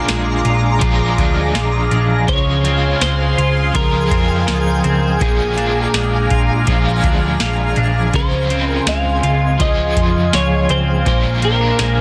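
A clean, twangy electric guitar melody opens this haunting, melancholic dream pop excerpt, over a bright twelve-string guitar playing arpeggios with lush chorus and tape echo, an overdriven semi-hollow guitar with tremolo, a swirling phased pad, and a twinkling granular shimmer in the background that drops out at 10.8 seconds. From 0.1 seconds, a round, dark hollow-body bass and a booming analog drum machine with a deep kick, crisp snare, metallic hats and tambourine join in. The harmony sways between Bb7 and Dbmaj7 beneath light reverb, in a dense, heavily limited modern master.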